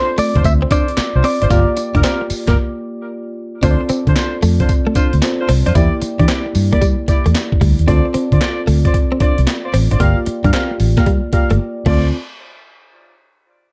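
A round, foam-muted fingered electric bass sits up front from 0.2 seconds, anchoring this bouncy, confident new jack swing cut from a longer piece, at 113 BPM in 4/4 with a 16th-note swing in D minor. Beside it, a gritty, compressed breakbeat sampler-style kit with a thumpy kick, medium-tuned snare, hi-hat, handclaps, tambourine and crash drives the groove through a break from 2.6 to 3.6 seconds, then falls silent near the end. A bright, twangy clean electric guitar plays a short melody only in the opening seconds, while a second direct-recorded clean guitar, picked and treated with analog chorus, carries a riff through the whole passage. A glassy FM electric piano with a bell-like attack and a chorus effect supplies accompaniment over chords moving between Dm7, Gm7 and Em7b5, and a mellow, tight horn section with light vibrato adds jazz-style stabs. Digital ambience gives the production a dark, warm finish.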